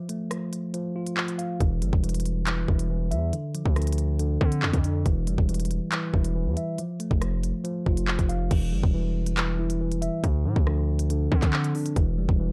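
A mellow, clean tine electric piano opens this tense, menacing drill excerpt, with the electronic drum kit of hard-clipped kick, crisp hi-hats, rim clicks, handclaps and crash cymbal arriving at 0.1 seconds over a half-time feel at 139 BPM in E phrygian. At 1.6 seconds a heavy, saturated 808-style bass with a noise layer and fast attack drops in, sitting up front alongside the drums and piano as the chords circle through F, Em and Dm7. The dark production is wrapped in digital ambience, and the piece moves into a new section at 8.5 seconds before it is cut off.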